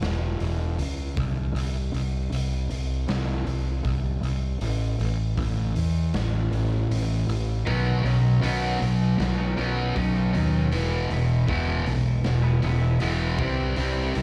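Quiet-loud alternative rock in E major at 78 BPM, played in a half-time 4/4 feel that gives this cathartic, anthemic passage a heavy, deliberate weight. A growly, overdriven fingered bass sits up front from the start alongside a raw garage drum kit with a punchy kick, a medium-tuned snare and hi-hat, its sound saturated and gritty with a rolled-off top. At 7.7 seconds a thick, distorted fuzz guitar enters with a picked riff, pushed forward in the mix. With it comes a clean, twangy electric guitar playing compressed arpeggios in the background, dressed in subtle chorus, digital delay and slapback echo. The chords move from E5 through A5 to Badd9, E and Cadd9. The whole performance comes across as a live gig heard through a club PA, with small-room ambience and club reverb around the band.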